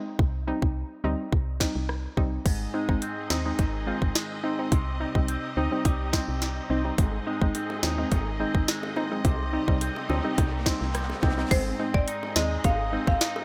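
Dancehall at 106 BPM in a straight 4/4, tough and sultry, cut from a longer piece and moving between C minor and A-flat: a soft, mellow chorused pluck opens, joined at 0.2 seconds by a woody, dark FM bass and an up-front electronic kit with tight kick, sharp snare, metallic hi-hats, rim clicks and crash. From 2.5 seconds a lush studio string section with vibrato and portamento holds sustained chords under sidechain pumping while a bright, twangy clean electric guitar picks arpeggios, and distant, high-tuned bongos and a very quiet riser add colour later. At 11.5 seconds a marimba struck with hard mallets takes a brief, percussive melody through delay, all set in light reverb with a bright 1980s-style digital production.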